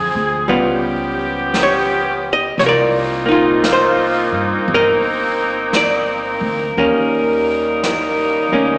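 Smoky and wistful, this excerpt from a slow 57 BPM jazz ballad in C minor swings gently in 4/4 as a dark, clean hollow-body archtop guitar with slapback echo and a tight, vintage saxophone section holding soft-attack, vibrato-laden chords sit up front over a woody, thumpy pizzicato upright bass, with a brushed drum kit of snare and hi-hat joining at 0.5 s, all caught live through a venue's PA with recital hall reverb and a small-speaker sound while the harmony moves from Dm7b5 and Db7#11 to a long Cm11 before turning to Eb7.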